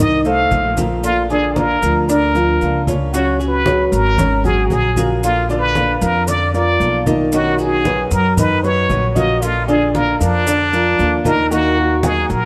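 A straight, danceable 4/4 Cuban son and guajira groove sets a sultry mood. Grainy maracas join at 0.2 s and low-tuned congas sit in the background from 0.3 s, over a woody, thumpy pizzicato upright bass. Up front, a brilliant jazz-style trumpet with a plunger mute carries the solo melody with a wah-wah bite, while a fingerpicked flamenco guitar and a boxy baby grand piano playing arpeggios fill out chords that keep circling back to Bb, all set a little further back in the room by plate reverb in this short cut from a longer piece.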